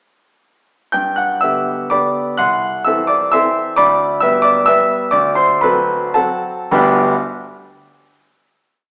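Sparkling and playful, this complete classical piano waltz in G major moves in 3/4 with a rubato feel, its tempo ranging from 99 to 139 BPM and tuned to A4 = 437 Hz. A concert grand plays solo from 0.9 to 7.1 seconds, spanning G1 to G6 with a polished, present tone, deep bass and short sustain. The tune rings out in filled octaves over a waltz bass, passing through G, Am/C, G/D and D7 before settling on a final G chord. The pace slows from 3.1 to 6.7 seconds, leading into that closing chord. A wet recital hall reverb surrounds the instrument, and the sound comes from further back in the room with a small-speaker character, though the piano itself still sits up front.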